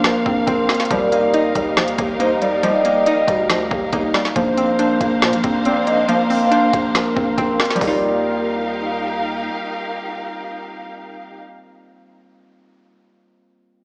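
A smooth, gliding sine lead with portamento, vibrato, chorus and digital delay floats over a ringing fingerpicked Celtic harp, a hollow detuned square-wave pluck, lush bowed strings with a dark vibrato and a growling 808-style bass in this dreamy, wistful half-time trap fragment at 139 BPM in Eb major, as an up-front kit of knocking kick, woody snare and crisp hats drops out at 7.9 seconds, the lead at 9.1 and the bass at 9.5, leaving harp, pluck and strings to ring through a large, bare-room reverb.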